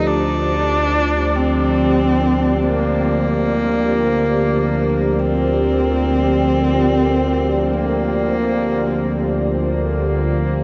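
Cavernous and unsettling, this free-time dark ambient drone fragment, cut from a longer piece and resting on G minor, sets a husky, focused horsehead fiddle melody with vibrato and portamento, bathed in shimmer reverb and diffuse delay, over a moody, wave-folded analog pad with chorus, a very quiet, eerie FM bell tracing inharmonic arpeggios, and an up-front, vintage sawtooth analog drone with pulse-width modulation, heard in a vast, echoing space with a dim top end.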